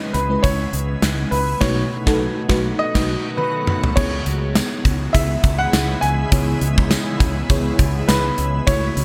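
Over a lightly swung 102 BPM groove in 4/4, a gated 80s drum kit with a punchy kick and bright cymbals drives this moody, dramatic 1980s-style pop excerpt in C# minor, alongside a round, dark fretless electric bass and a clear baby grand piano carrying the melody. Beneath them, an FM electric piano with a soft pad layer adds lush, dreamy chords through chorus and tremolo, while a shimmering ambient pad holds ethereal sustained chords with chorus and built-in reverb. The band hits accents from 1.6 s, capped by a drum fill at 3.4 s, as the harmony moves from C#m7 to B7 and back, set in a light small-room reverb.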